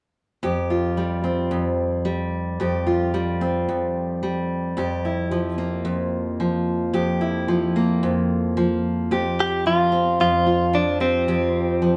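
A straight 4/4 pop groove at 111 BPM carries this heartfelt, carefree passage from a longer piece, where a full-bodied, up-front picked dreadnought steel-string acoustic guitar picks its accompaniment around Fsus2 and Fsus24 from 0.4 seconds, joined at 9.4 seconds by a clean, compressed, direct-recorded electric guitar melody, all captured as a band playing live in one room with moderate studio reverb.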